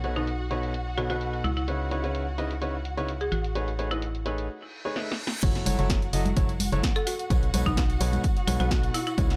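A small room ambience frames this bittersweet, soulful piano house excerpt at 128 BPM in 4/4, with a light 16th-note swing, in F# dorian and tuned to A4 = 436 Hz. A clear, open concert grand piano plays a riff with deep bass, while a dark, woody string section holds lush bowed chords with vibrato, and a hollow, organ-like FM bass with a fast, decaying attack sits up front. All three pump against a sidechain across the whole piece, as a punchy analog drum machine supplies a tape-tinged snare, hi-hat and crash cymbal, the hats, snare and cymbals each muffled by a low-pass filter. A buzzing marimba struck with hard mallets carries a dry, vintage-sounding melody through a delay, falling silent between 4.1 and 7.0 seconds. A reverse cymbal and a drum fill lead into the drop at 5.4 seconds, where an electronic impact hits and a punchy analog kick enters along with ringing tambourine and softly played congas set in the background. 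The chords move from B9 through C#m9 and Amaj9#11 to F#m7 and back to B9.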